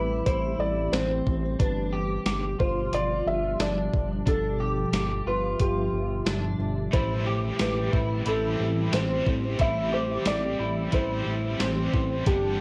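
Melancholic and hazy, this dream pop excerpt drifts over Am7 and G7 chords, led by a soft, felt-muted upright piano melody with audible action noise, tape echo and plate reverb. Beneath it sit an ethereal pad of sustained chords, slightly broken-up electric guitar arpeggios in ensemble chorus, and a glossy chorused synth bass placed up front beside a gated 80s digital drum machine whose thumpy kick and gated-reverb snare enter at 0.3 seconds. At 6.9 seconds a bright, double-tracked cranked stack guitar joins low in the mix with overdrive and tremolo, and the whole recording carries the warble and pitch drift of worn old cassette tape.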